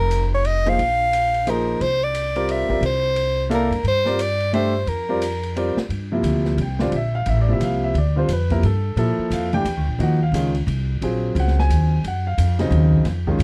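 A dry, close 1970s-style studio sound frames this intense, hypnotic modal jazz at 176 BPM in a swung 3/4, where a soft-attacked, close-miked soprano saxophone carries the melody up front until 5.6 s over a woody, thumpy gut-string upright bass, a dark, smooth drum kit with a boomy kick and dark cymbals sitting low in the mix, and an intimate concert grand piano, entering at 0.7 s, whose deep bass, long sustain and audible action noise color the suspended and minor ninth chords.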